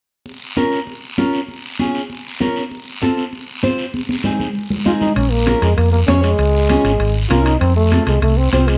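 A light reverb gives this short cumbia cut a modest sense of space, with a driving, danceable pulse at 196 BPM in Bb minor. Bright, damped congas played with soft hands and a raspy guiro open at 0.3 seconds, joined almost at once by a full-bodied, fingerpicked nylon-string guitar up front, its classical tone carrying a touch of finger squeak as the chords move through Bbm, Db, F and Ab. A drum fill arrives at 3.9 seconds, and a bucket-muted trombone takes the solo melody at 4.9 seconds, veiled and growling, with vibrato and scooped notes. At 5.2 seconds a dark, round hollow-body electric bass enters up front alongside ringing metal-shell timbales, close and dry, lifting the groove for the final stretch.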